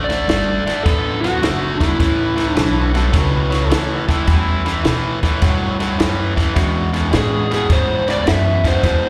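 A swung shuffle in four rolls along with a laid-back, rollicking feel in this electric blues excerpt cut from a longer piece, captured live through the venue's PA with a touch of recital-hall ambience. A compact cocktail drum kit drives it with a punchy kick, a high-tuned snare and dark ride cymbal, under a woody, growly pizzicato upright bass and a bright, compressed, up-front overdriven electric guitar riff with slapback echo in the low register. A warm overdriven slide guitar carries the melody at the start, drops out, and returns at 7.2 seconds. From 1.2 seconds a barky, reedy electric piano sits in the background with light overdrive, fast tremolo and slapback echo. At 2.6 seconds a gritty amplified harmonica adds a jazz-style second line with light vibrato, tongue slaps and scooped notes, while the harmony moves from a sixth-ninth chord through dominant thirteenths.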